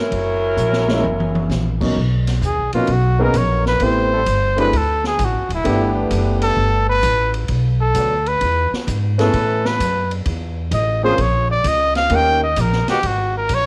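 A swinging big-band drum kit in a natural big-room sound and a woody, growly upright bass drive this joyful, brassy jazz cut at 130 BPM in 4/4, with a drum fill early on, while a distant saxophone section with vibrato carries the opening melody until 1.8 s. From 2.5 s a soft-attacked, up-front trumpet takes the solo over polished grand piano accompaniment and a loose trombone section holding smooth chords in the background. The bass carries tube saturation, the horns and piano have a cassette-tape tint, and light studio reverb frames this homespun recording.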